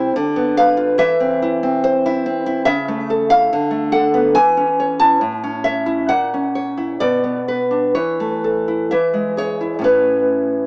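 Tender and warm, this brief romantic excerpt for solo nylon-string guitar moves in a rubato 2/4 at around 62-73 BPM in A major, its fingerpicked classical voice sitting up front with a cassette-tape haze, analog delay and a moderate studio reverb that give it a small-speaker, homemade sound as it wanders through chords like G7/D, Bm7b5/D and F#7/A# before coming to rest on A at 9.9 seconds.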